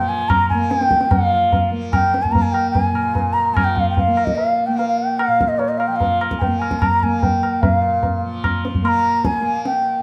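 Hindustani classical music, meditative and introspective, moves at 148 BPM in a straight 4/4 in this short cut from a longer piece, where an airy, expressive bamboo bansuri carries the melody up front with vibrato and tongued notes, a softly plucked tanpura lays down a buzzing, shimmering drone beneath it, and a low-tuned, ringing tabla enters at 0.3 seconds close and forward, all three playing live together in a stone room with a one-second reverb.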